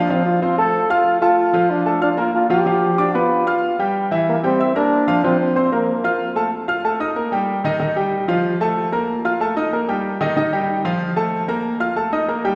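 Latin in Bb major at a brisk 187 BPM, this sunny, joyful passage from a longer piece opens with a warm, pop-style trombone solo sung out with vibrato over a clear, up-front grand piano accompaniment. The trombone carries the melody until 6.3 s, when the piano continues alone through chords such as F7, Eb and Bb5 until 12.6 s. A wet church reverb surrounds the whole recording, and the horn has a roomy, slightly distant glow.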